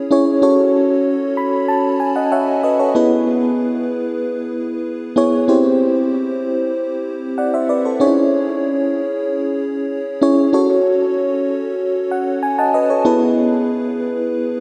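Set in a straight 4/4, this short pop passage, cut from a longer piece, is carried by a solo FM electric piano layered with a soft pad. Its tone is mellow and detuned, with a fast attack and decaying notes over a noise layer, coloured by chorus, tremolo and tape echo and sitting up front in the mix. A lush hall reverb with a long tail soaks the whole mix, giving it a dreamy, romantic glow that still feels uplifting. The harmony moves from F#m to E, then C and C#m, before returning through F#m to E. Short electric piano fills appear at 1.1 seconds and again at 11.8 seconds.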